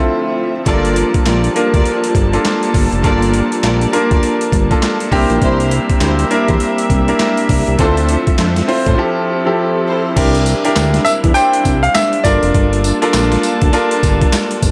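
A swung sixteenth-note groove from a gritty, overdriven boom bap sampler-style drum kit with a thumpy kick, high-tuned snare, handclaps, tambourine, hi-hat and crash drives this confident, bouncy new jack swing R&B cut, as a fat, saturated analog sawtooth bass, an intimate concert grand piano with audible action noise, a smooth sul tasto string section holding sustained chords, and veiled con sordino string stabs touched with digital delay support a bright, short-sustained grand piano melody that enters at 11.0 seconds.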